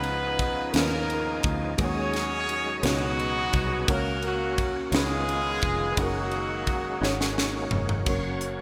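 Slow, jubilant and soulful gospel in 6/8 at 57 BPM in F# major, where a clear, tight horn section with octave doubling and digital delay carries the melody up front until 7.4 seconds over a woody, slightly detuned upright piano with subtle chorus, a thick tonewheel organ with key click, overdrive and slow rotary speaker, a round, foam-muted fingered electric bass, and a crisp, airy fusion drum kit with a high-tuned snare and gated reverb that plays a fill at 7.0 seconds, before a mellow French horn section slips in softly at 8.1 seconds, all set in a lush hall with bright 1980s-style digital polish.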